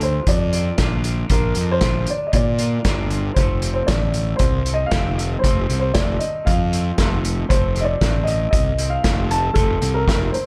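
Cool and moody, this indie rock excerpt moves at 116 BPM in a straight 4/4, shifting from Bb to F at 3.4 seconds. A dark, woody upright piano carries the melody with long sustain and a slapback echo, while a fuzzy, overdriven fingered bass and a punchy vintage drum kit sit up front, the kit's medium-tuned snare and rolled-off top ringing in a pumping small room. A clean, twangy, picked electric guitar riff stays in the background, and the production is wrapped in a dark, warm studio reverb.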